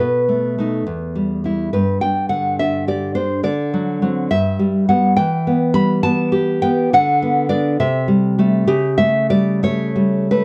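The recording has a dark studio sound with moderate reverb, its 0.6-second tail giving each note a gentle sense of space. This short excerpt from a longer romantic piece features a solo nylon-string guitar, fingerpicked and placed up front. Fresh strings give it a full-bodied, deep classical tone across a range from E2 to B5. The pulse sits at 69 dotted-quarter beats per minute in 6/8, loosened by rubato, with the guitar tuned to A4 = 438 Hz. The mood is sunny and warm as the harmony moves from B7 to Em, through D7 and G, and on to Bm/D, Am7/C and A7/C#, with the guitar playing alone for the full 10.4 seconds.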